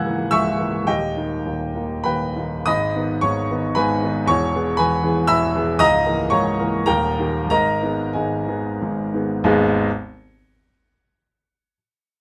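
In a flexible three-four lilt with free rubato, moving between 90 and 122 BPM and slowing from 5.0 to 9.4 seconds, this brief passage from a longer romantic character piece for solo piano sits in G# minor with a bittersweet, brooding mood. A baby grand, tuned to A4 = 442 Hz, sounds clear, open and up front, its long sustain spanning C#1 to G#6 in a light reverb. Its harmony circles from a diminished chord over C# through D# to G# minor and E before returning, and the piano plays until 9.9 seconds.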